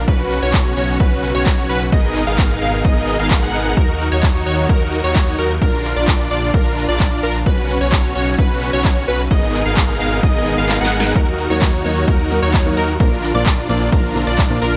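A very quiet, airy pad and a thick, saturated saw bass with chorus open this euphoric progressive house excerpt in Eb minor at 130 BPM, quickly joined by huge supersaw chords, a bright, catchy plucky lead playing arpeggios, and a punchy electronic kick up front with crisp hi-hats, snare, handclaps and shaker. Sidechain pumping and dub echo shape the supersaws, lead and piano, and the lead also carries analog chorus and a filter sweep. The kick drops out for a drum fill from 10.7 to 11.2 seconds, with a barely audible swell rising from 10.8 seconds, and a dark, mellow grand piano enters at 11.1 seconds, all under light reverb.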